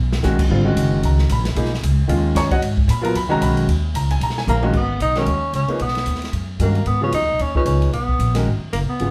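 Heard from further back in a moderately ambient studio, this cool, spiritual modal jazz excerpt in G# dorian swings at 226 BPM, with a woody pizzicato upright bass and an intimate grand piano with audible action noise up front from the start, a swinging big-band kit with dark cymbals and a punchy kick marked by drum fills at 0.0 and 4.5 seconds, and a breathy tenor saxophone with light vibrato, scooped notes and plate reverb entering at 4.5 seconds to carry the melody.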